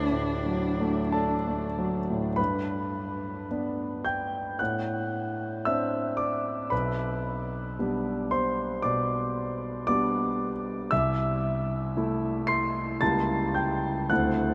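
Romantic classical music for cello and grand piano, tender and unhurried with a rubato feel, heard as a fragment cut from a longer piece. A single bowed cello sings a brief, close-miked melodic phrase with vibrato and portamento that ends at 1.8 s, while the concert grand carries on alone as accompaniment until 14.5 s, its intimate, polished tone, deep bass, long sustain and audible action noise placed up front. Huge reverb sets the duo in a vast, echoing space as the harmony moves through a diminished chord at 13.0 s.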